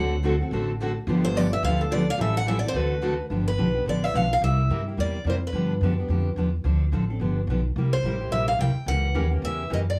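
Acoustic string swing in the jazz manouche style, this playful fragment of a longer piece moves at a brisk 215 BPM with a swung feel in G mixolydian, cycling through dominant chords such as D7, G7 and C7 before landing on a C#dim7. A bright, boxy parlour guitar carries the melody up front with a solo opening the passage, pausing at 5.7 seconds before returning at 7.9, while a full-bodied dreadnought guitar picks accompaniment beneath it and a second dreadnought sits in the background until 3.1 seconds. An up-front upright bass with gut strings supplies a woody, thumpy pizzicato foundation throughout, all set in light reverb with a small-room ambience.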